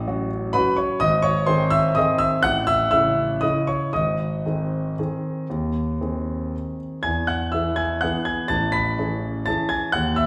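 Set in a reverberant recital hall heard from further back in the room, this short cut from a longer classical piano waltz in 3/4 drifts with rubato between 113 and 131 BPM in a wistful, bittersweet mood, its solo concert grand sounding intimate and polished, with deep bass, long sustain and audible action noise as it moves through chords from F#m/A to a closing Amaj7.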